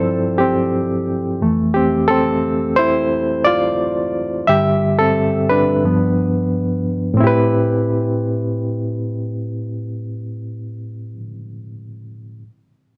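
Soul at 88 BPM in 4/4 with a straight feel in A minor, this bittersweet, cinematic excerpt features a solo reed electric piano, up front and played alone from 0.0 to 12.4 seconds across a range from F2 to E5. Its tone is reedy, bright and barky, lightly overdriven and shimmering with fast tremolo through built-in speakers, moving through G7sus4, Fmaj7, G69 and G7 before settling on Am7 at 7.2 seconds. Light reverb and digital ambience frame a dark production.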